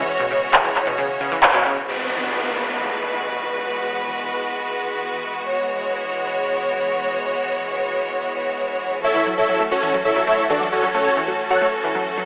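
Bittersweet and soaring, this uplifting trance piece at 134 BPM rests on a rich, bowed symphonic string section with vibrato holding sustained chords through C#m, Eadd9 and F#m7, while a bright, detuned sawtooth unison pluck plays decaying arpeggios with dub echo, a crisp, overdriven big-room dance kit of handclaps and hi-hat drives the opening until 1.9 seconds, an electronic downlifter takes over from there, and huge, lush supersaw chords with analog chorus carry the melody from 9.0 seconds, the mix sitting in a wet digital room reverb with a thin telephone tone.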